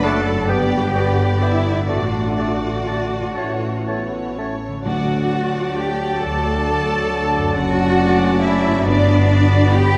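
A dark, hall-drenched sound with a soft top end frames this serene slow movement for symphony orchestra in D major, moving in a rubato 6/8 at roughly 39-47 dotted-quarter beats per minute. A focused chamber violin section carries the vibrato-rich melody, shadowed by a lush symphonic violin section, an airy, hollow flute, a distant oboe and a very quiet clarinet on second lines. Beneath them, a very quiet bassoon and a faraway viola section fill in the accompaniment, while a French horn section and a tight trombone section hold sustained chords and a ringing concert harp spreads gentle fingerpicked arpeggios. The double bass and cello sections sit up front, the bass line bowed and even, the cellos expressive, anchoring the harmony as it drifts from G through D and A to a closing Gmaj7. Timpani struck with hard mallets on calf heads add a brief articulate accent from 4.9 to 6.2 seconds, all within a passage cut from a longer piece.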